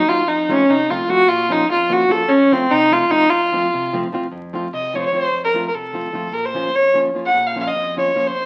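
In a brisk 5/8 metre at 297 BPM counted in eighths, with a straight feel, this short Balkan folk fragment cut from a longer piece moves in F phrygian dominant, tuned slightly low to A4 = 439 Hz. A single bowed fiddle carries the melody, up front and close, with a biting, earthy tone, light vibrato and an airy edge to the bow. Beneath it, a classical nylon-string guitar, sitting much lower in level, fingerpicks the accompaniment through chords that turn between F and Bbm. The mood is bittersweet and virtuosic, and from 4.3 seconds the fiddle takes a solo that runs to the close at 8.5 seconds. A wet studio reverb surrounds the playing, and the whole sounds like a very old 78 rpm record, complete with vinyl crackle.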